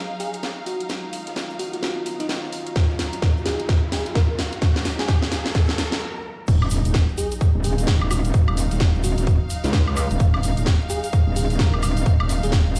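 A swung 129 BPM bass house groove in Eb minor, bouncy and swaggering, builds over a garage drum kit with a cracking snare and bright hats, a very quiet open jazz kit, lush bowed strings, a deep, moody pad, a sparkling bell-like FM electric piano melody with chorus, phaser and digital delay, and a background riser and sub drop, with a tight, up-front electronic kick entering at 2.8 s, before a brief break gives way at 6.5 s to the drop, where a metallic, saturated wobble bass with sidechain pumping and a grainy tube shaker join, the whole piece played on a big sound system in a bare room and cut from a longer track.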